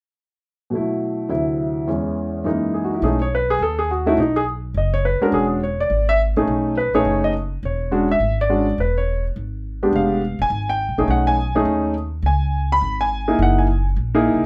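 An intimate concert grand piano opens this relaxed, playful swing jazz excerpt at 208 BPM in B mixolydian, carrying the melody up front with audible action noise and deep low notes through chords such as B7sus4, E13 and Fdim7, before a woody pizzicato upright bass joins at 3.0 s, all set in a modest small-room reverb.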